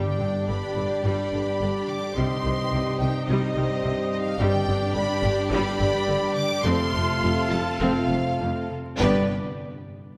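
Cinematic orchestral music with an adventurous, triumphant mood, cut from a longer piece: a rich, focused studio violin section carries the melody over a lush symphonic violin second line and an intense chamber viola accompaniment, while a distant cello section and an expressive double bass section hold the bass from 0.2 seconds. Mellow French horns with a soft attack and punchy, close-miked trombones sustain chords, a roomy trumpet section adds stabs, and a ringing, fingerpicked concert harp plays arpeggios, with calf-headed timpani sounding only at the opening and again at the close. The pace slows from 3.3 to 9.0 seconds as the harmony moves from G through C minor and F back to G, in a wet concert hall reverb.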